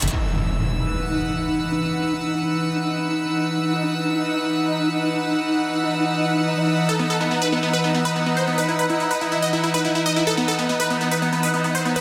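A straight 4/4 pulse at 142 BPM drives this intense trance passage, cut from a longer piece and resting on an E5 chord, as an electronic impact hits at 0.1 s while a bubbling, resonant sawtooth texture with random filter steps holds sustained chords through chorus and its own reverb under a filter sweep. Up front, a reedy chamber string section with gut-string tone and light vibrato bows a close, period-style bed throughout. A punchy, detuned supersaw stab flickers briefly at the very start, then returns at 6.9 s to carry the melody, bright and fast-attacking through phaser and dub echo, all set in a lush hall reverb and a dense, heavily limited modern master.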